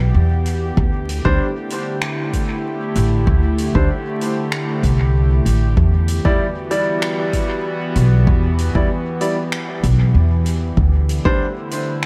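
Swinging lightly at 96 BPM in 4/4, this meditative, deep ambient dub fragment in E minor moves from Em through D7sus4 and Em7, with a woody, thumpy upright bass sitting up front beneath a warbling, nostalgic tape-like pad whose sawtooth and triangle tones bloom slowly through chorus and their own reverb. A soft-mallet kit of finger snaps and hi-hat enters at 0.5 seconds, its hall-natural sound trailed by dub echo, while an electronic kick with a tape-warm, layered depth joins at 0.8 seconds. Polished upright piano stabs with long sustain arrive at 1.2 seconds and drift into dub echo, all over a bed of vinyl crackle and studio reverb.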